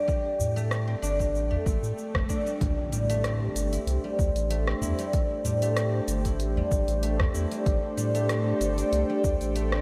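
A silvery guzheng opens this excerpt of earthy, hypnotic organic downtempo, its fingerpicked arpeggios ringing up front through a diffuse ambient delay, while a very quiet, dark, wind-like tuned noise texture breathes faintly above it. Almost at once, a punchy electronic kick and a deep house kit of dark hi-hats, rim clicks and shaker settle into a gently swung 4/4 groove, joined by a round, sine-like sub bass and a small, close, dry udu played very quietly. A background electronic swell rises from 1.6 seconds and gives way to an impact at 2.6 seconds, the moment the wind texture stops and an airy, breathy pad arrives. The pad holds soft, detuned sustained chords with a chorus shimmer, a moving notch and sidechain pumping that makes it breathe against the beat. A lush hall reverb soaks the mix in a dreamy haze, while the guzheng and sub bass stay clear and present throughout.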